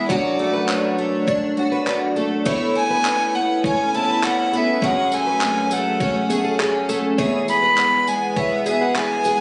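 Heartfelt and sunny, this acoustic pop fragment puts an airy, sul tasto violin melody with light vibrato and tape echo up front beside a shimmering, octave-doubled twelve-string guitar treated with analog chorus, while a felt-muted upright piano with audible action noise and a plugged-in steel-string guitar picking arpeggios with finger squeak sit in the background over a gritty, compressed sampler-style kit of thumpy kick, handclaps and tambourine, the whole captured on a phone in a reverberant club-like room that dulls the top end.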